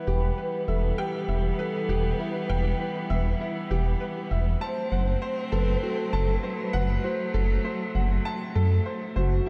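A velvety synth lead with chorus and delay opens this intimate, moving piano-and-strings electronica excerpt together with a bowed string quartet holding expressive sustained chords with vibrato and portamento, and a woody, boxy upright piano riff carried by delay. From 0.1 s a deep, rumbling detuned saw bass sits up front, its beating unison tone anchoring the shift from E minor to F-sharp diminished at 4.6 s, all within a dreamy mix soaked in lush hall reverb.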